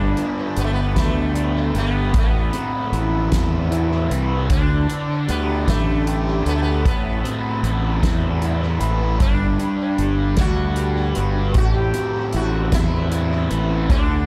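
A double-tracked fuzz guitar sits up front, its distorted, picked riff coloured by phaser and tape echo, in this mysterious, trippy psychedelic rock excerpt in A minor. It moves at a slow 51 BPM in a straight 6/8, with chords cycling through G, Amadd9 and Dsus4. A fuzzy, overdriven fingered electric bass holds the low end, equally forward in the mix. Above it, a bright sitar carries the melody, its plectrum-plucked tone shimmering with sympathetic strings and trailing tape echo. A vintage combo organ sustains chords very quietly, its buzzy tone touched with light vibrato, while a barely audible tanpura drone hums beneath until 5.1 seconds. Soft-mallet drums enter at 0.2 seconds with a boomy kick, fat snare and hi-hat in a big room, and heavy studio reverb soaks the whole echo-laden mix.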